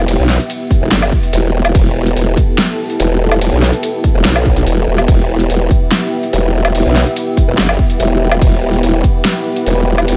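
A lush, detuned supersaw pad holds sustained chords over a saturated, formant-filtered wobble bass from the very start of this menacing, aggressive heavy wobble dubstep excerpt. The pad pumps under sidechain and is shaped by a low-pass filter, while the bass sits up front with chorus and overdrive. A half-time electronic drum kit joins at 0.1 seconds with a huge snare, metallic hats, ride cymbal and woodblock, and a punchy, layered electronic kick enters at 0.7 seconds and stops at 9.1 seconds, both drum parts carrying a tape-like warmth under light reverb.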